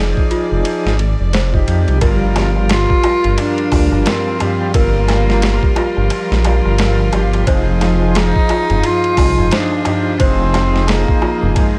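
Trip hop in a hypnotic, melancholic mood, this short cut sets a reedy tonewheel organ with overdrive, slow rotary speaker, tremolo and tape echo, clear bowed strings in the background, and a delicate, bell-like celesta with delay over a deep, rumbling detuned saw bass and a gritty, pitched-down boom bap sampler kit with a thumpy kick and high-tuned snare up front, while a soft-handed clay darbuka joins in the background at 2.0 seconds and a rich, smooth solo cello carries the melody through tape echo from 2.7 seconds, all within a small room ambience.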